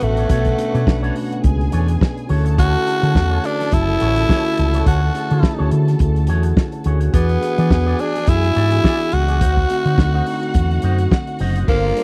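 Disco at 105 BPM in 4/4 with a light 16th-note swing, this glamorous, sultry excerpt rides a dry, close 1970s-style studio sound. A growling tenor saxophone carries the melody up front, breathy and raspy with a light vibrato, while a fat-snared soul drum kit with dark cymbals and a tight kick sits close beside a round, punchy fingered electric bass. Behind them, a mellow tine electric piano and a twangy electric guitar with an envelope filter and spring reverb fill in the accompaniment. A dark, woody string section bowed with vibrato plays a distant second line, and a very quiet French horn section holds loose sustained chords. The harmony moves from Bm9 through Dmaj9#11 and E9 to D7b9, with the bass dropping out at 11.9 seconds.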